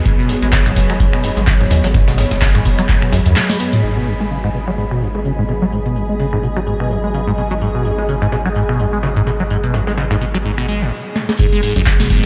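A warm, chorused analog pad and a bright, cloudy granular pad open this trippy, hypnotic acid house excerpt, pumping under a squelchy, resonant acid bass riff with phaser and delay, a round, deep sub bass, a booming analog drum machine with crisp snare and metallic hats, and a gritty, dusty sampler-style kit buried low. A deep electronic kick drops out at 3.0 seconds and a grainy, very quiet shekere at 3.8 seconds, both returning at 11.4 seconds alongside a single ringing vibraphone note, all soaked in a huge, dreamy reverb.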